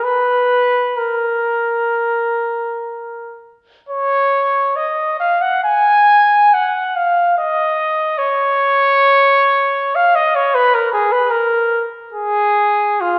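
Classical and expressive, this short 13.2-second cut from a longer piece features a trumpet alone, its mood yearning and lonely. The tempo drifts freely between 53 and 81 BPM in a rubato 4/4, tuned slightly low at A4 = 439 Hz. The trumpet has a warm, vintage tone and plays in a classical style across a range from F4 to Ab5. It sits up front, wrapped in a lush scoring-stage reverb with a 1.5-second decay that lets each phrase linger, while the recording as a whole is heard from further back in the room. The spacious ambience deepens the sense of solitude around the single voice.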